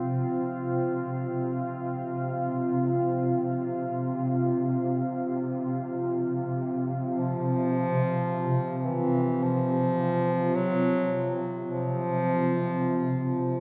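Unsettling and desolate, this dark ambient drone drifts in free time, tuned to A4 = 437 Hz and cut from a longer piece. A deep, moody pad holds sustained chords with chorus and a slow-attack, full-bodied sound, while a swarming, detuned drone with ring-modulated grit and granular texture sits beneath it under a filter sweep, both bathed in a cathedral reverb with a 5.5 s tail. At 7.2 s a warm, smooth-topped bass clarinet enters up front with a soft-attack solo melody touched by delay.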